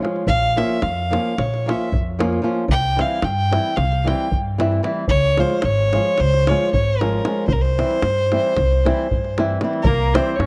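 A clear, smooth fiddle with light vibrato carries the bittersweet, restless melody of this Balkan wedding-band excerpt in C phrygian dominant, set in a brisk 9/8 at 226 BPM over dark fingerpicked flamenco guitar, a thumpy pizzicato upright bass on gut strings and a tight, dry davul, moving through Bbm, C and Db chords in a moderate spring reverb with worn, warbling cassette-tape pitch drift, before a vintage trumpet slips in at 9.9 seconds.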